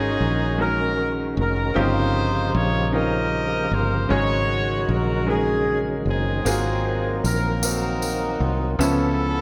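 Reverent and hopeful, this slow gospel passage in 6/8 is cut from a longer piece. A smooth-topped horn section carries the melody up front with light vibrato and a pop-styled ensemble sound. A bright, brilliant baby grand with short sustain provides the accompaniment. A fat, clean tonewheel organ holds the chords with percussive third-harmonic attack, key click, chorus vibrato and a slow rotary speaker. A punchy, foam-muted fingered electric bass sits up front beneath them, and a jingly, close and dry tambourine joins at 6.5 seconds. The harmony moves from Ab7sus4 through Eb13/G and Ab13 to a closing Db7alt, all bathed in a moderate concert hall reverb.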